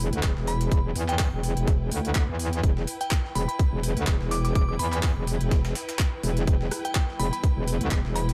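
Bass house at 125 BPM in E minor, this gritty, bouncy excerpt rides a swung 16th groove over an Em chord, with an up-front electronic kick with a tight punch, a garage kit of crisp hats, handclaps and rim clicks, and a very quiet, pitched-up breakbeat sampler kit with a high-tuned snare underneath. A metallic, aggressive FM wobble bass dominates the low end with chorus, overdrive and sidechain pumping, while a bright, lush string section pumps in the background and a crystalline synth bell with 12-bit sampler grit, chorus and digital delay carries the melody from 0.5 seconds. At 7.1 seconds a deep, moody, detuned ambient pad slips in very quietly with sustained chords, all in a dry mix with little reverb.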